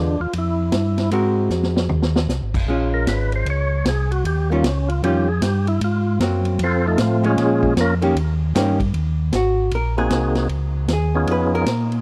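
A swinging 4/4 at 154 BPM drives this greasy soul jazz organ trio in Ab mixolydian, cut from a longer piece, with a vintage drum kit entering at 0.3 s with dark cymbals and a punchy kick, and a drum fill at 1.5 s. A mellow tonewheel organ carries a round bass line with chorus vibrato and slow rotary speaker, while a percussive tonewheel organ solos up front with key click, slow rotary swirl and tape echo. A dark, clean, picked archtop guitar comps and takes over the solo at 8.9 s, all in a dry, close 1970s-style studio sound.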